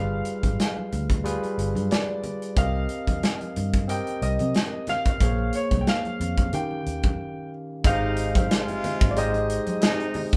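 This short cut from a longer piece sounds like a band playing live together in a small room, with a moderate, short reverb giving it a close, lush feel. It's 1970s-style soul at 91 BPM in Ab major, with a light sixteenth-note swing and a warm mood. A clear, intimate baby grand carries the melody, its action noise audible and its notes sustaining long, while a barky tine electric piano, lightly overdriven through a combo amp, fills in the accompaniment. Underneath, a dark, round, foam-muted electric bass sits beside an up-front modern drum kit with a punchy kick and a medium-tuned snare, and ringing congas played with hard hands stay in the background. After a break from 7.2 to 7.8 seconds, a horn section with a smooth top, light vibrato and tube saturation enters with jazz-style stabs as the harmony lands on Abmaj7 at 7.8 seconds, following a progression from G7b9 through Cm7, Bbm9 and Eb9.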